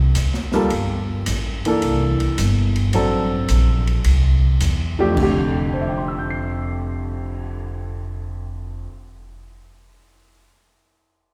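Jazz piano trio in F major at 108 BPM, swinging in a sophisticated, relaxed 4/4 as a short cut from a longer piece, with chords moving from Csus2 through C13 and D7 before settling on F69 at 5.2 seconds. A woody pizzicato upright bass sits up front beside a natural-sounding warm baby grand piano carrying the melody from 0.5 seconds, while a quieter open drum kit with dark cymbals, a boomy kick, a medium-tuned snare, hi-hat, ride, crash cymbal and cymbal swells drops out at 7.3 seconds. A lush church reverb gives the trio a long, resonant hall around it.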